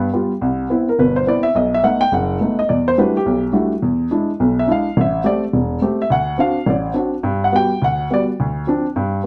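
A brisk swing in four drives this short jazz fragment, its eighth notes leaning into a light, buoyant lilt that feels sophisticated and playful. A lone baby grand piano carries everything from the opening moment to the cut at 9.3 seconds, ranging from deep bass notes up into the upper middle of the keyboard. Its tone is warm and natural, placed up front with an intimate closeness that lets the soft clatter of the key action come through. The harmony moves quickly through a chain of jazz chords, from Cmaj7 through B7, Em11 and E7, then Am7, D7 and Gmaj7 before landing on Dm7 near the end. A moderate large-studio reverb gives the room a gentle sense of space around the instrument, and the clip ends abruptly, clearly lifted from a longer performance.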